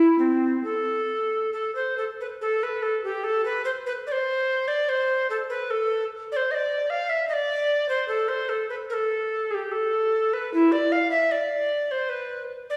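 The rhythm is elastic and rubato, with uneven beats stretching and settling within a four-beat metre, giving this baroque-style fantasia an unhurried, searching quality. A lone tenor recorder carries the whole passage from 0.0 to 12.8 seconds, moving between C4 and F5 in a grave, introspective voice. Its tone is woody and airy, with a touch of vibrato and a crisp attack where each note opens with a distinct chiff. A brief opening phrase gives way at 2.4 seconds to a return of the same material. The recorder sits up front, while a wet recital-hall reverb places it further back in a resonant room, as if this passage were cut from a longer performance.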